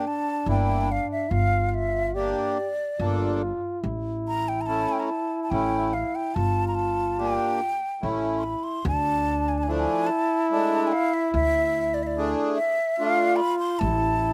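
A breathy concert flute with vibrato and slapback echo carries the melody over a mellow, close-miked trombone second line and a reedy accordion from the opening, joined at 0.5 seconds by a woody pizzicato upright bass, in this festive, soulful klezmer excerpt in 3/4 at 72 BPM in G dorian sharp 4, moving between G minor and A before shifting to D minor, with the accordion dropping out at 13.4 seconds in a dry, outdoor sound.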